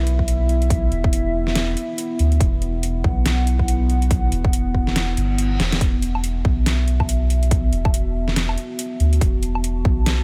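A round, soft sub bass with tube saturation sits up front in this meditative, cavernous deep dubstep excerpt, which moves at 141 BPM with a half-time feel, a swung 16th-note groove and an E5 chord, tuned to A4 = 443 Hz. A punchy, overdriven electronic kick and a layered kit with a deep snare, metallic hats and woodblock share a small-room grit, while a dark, detuned analog pad holds slow-blooming chords through chorus and phaser. At 5.2 seconds a reverse cymbal rises faintly in the background, the kick drops out at 5.4 seconds, and a drum fill lands at 5.6 seconds, all within a digital ambience.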